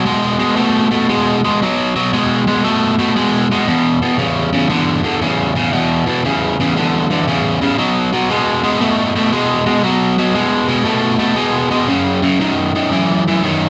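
A crunchy electric guitar opens this short rock excerpt on its own, playing overdriven, picked power chords with a driving, raunchy attitude. The tempo sits at 117 BPM in 4/4, with the eighth notes carrying a 67% swing that gives the riff a loose, strutting feel. The guitar stays in a low register between E2 and A3, moving from B5 to E5 at 3.7 seconds, back to B5 at 7.8 seconds, and on to F#5 at 11.9 seconds. Its bright tone is double-tracked and placed up front, filling the mix as the lone part for the full 13.7 seconds. A moderate large-studio reverb adds a sense of room around the guitar, and the instrument is tuned to A4 = 441 Hz.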